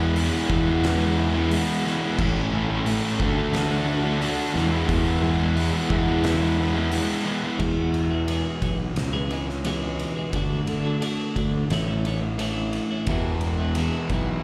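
Restless and anthemic, this quiet-loud alternative rock passage, cut from a longer piece, moves at 88 BPM in a straight 4/4 feel in E major, tuned slightly flat to A4 = 437 Hz. It opens with two distorted fuzz guitars playing a riff over E, A and D chords: one bright and compressed with a slapback echo, the other thick, warm and up front. Beneath them a growly, overdriven fingered bass runs the full length, and an oversized low-tuned acoustic kit with a fat snare, punchy kick and dark cymbals sounds gritty in a pumping stone room. At 7.6 seconds the fuzz guitars drop out and a twangy, clean twelve-string electric guitar takes over with up-front arpeggios touched by slapback echo, as the chords move through D and A back to E. The brighter fuzz guitar returns at 13.1 seconds for the closing moments. The whole performance comes across as a live gig heard through the venue's PA, with small room ambience and recital hall reverb.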